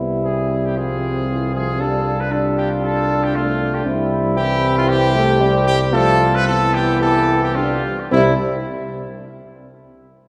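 Stately and noble, this classical brass quintet passage moves at 114 BPM in 4/4 with a rubato feel in C major, anchored by a warm tuba sitting up front on a low C with light vibrato. The trumpet carries the melody from 0.2 seconds with light vibrato, while a mellow flugelhorn adds a second line, and a French horn with a smooth top and a soft-attacked, vintage-toned euphonium accompany in the background. A wet church reverb sets the quintet further back in a roomy space as the harmony moves from Fm/C through G5/C, C and G7/C before settling on C at 8.1 seconds.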